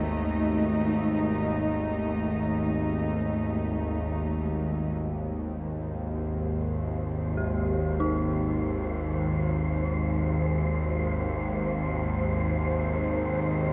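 Desolate and unsettling, this dark ambient drone drifts in free time, cut from a longer piece and set in a vast, echoing space with a long cathedral-like reverb. A bowed-like drone sits up front across the whole passage, low and tense, its string-like sawtooth tone carrying vibrato, a slow attack and a long release in its own reverb. At the start a muted cello section, close and veiled, plays sustained chords with vibrato until 4.9 seconds, when the harmony settles on Ab. From 6.0 seconds an airy, breathy wind-like texture hangs on a single high pitch, mellow and sustained in its own reverb. At 7.4 seconds a dark, detuned synth bell enters in the background with eerie, inharmonic arpeggios, its vintage FM tone warbling through chorus and tape echo as it decays.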